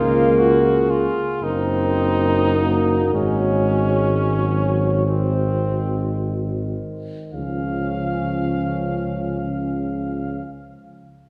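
A short, hymn-like passage for brass band opens with all five parts sounding together: a warm solo cornet carries the melody over a mellow bed of horns, euphonium, trombone and tuba. The pace is very slow, around 25-40 BPM counted in dotted quarters in 6/8, with a free, rubato feel in D-flat major, and it gradually broadens up to 7.3 seconds before a new phrase begins and the harmony comes to rest. The cornet sits present and lyrical with a light vibrato, while the French horn section plays a tight second line that stays distant and in the background. Beneath them, a smooth-topped euphonium and a mellow, faraway trombone fill in the accompaniment, and a close-miked tuba anchors the bass up front. The harmony moves from Db through Ebm/Gb to an Ab7sus4 that settles onto Ab7 before returning home to Db. A generous concert hall reverb, heard from further back in the room, wraps the ensemble in a lush, tender glow.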